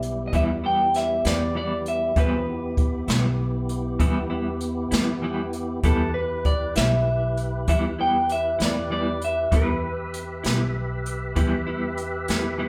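A slow, smoky E minor blues in 12/8 at 65 BPM opens with a bright, twangy, slightly broken-up lead guitar carrying the melody up front over fat, key-clicking tonewheel organ chords with overdrive, chorus vibrato and slow rotary speaker, a woody, thumpy gut-string upright bass, a brushed drum kit with a boomy kick and a clean, picked tremolo guitar accompaniment entering at 0.3 s, the band sounding live in one room with a moderate large studio reverb, as the lead guitar drops out at 10.7 s in this brooding excerpt.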